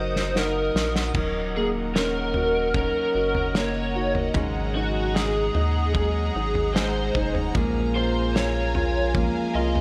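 An overdriven electric lead guitar sings the melody over clear grand piano, a breathy, warbling vintage pad, a full-bodied fingerpicked acoustic guitar set in the background and a round, deep sub bass, as a loose indie kit with dark cymbals enters at 0.2 seconds with a fill. The melancholic, emotional pop ballad then settles into a straight 75 BPM 4/4 through Ebm7, Ab7sus4 and Bbm7, all soaked in a dreamy plate reverb.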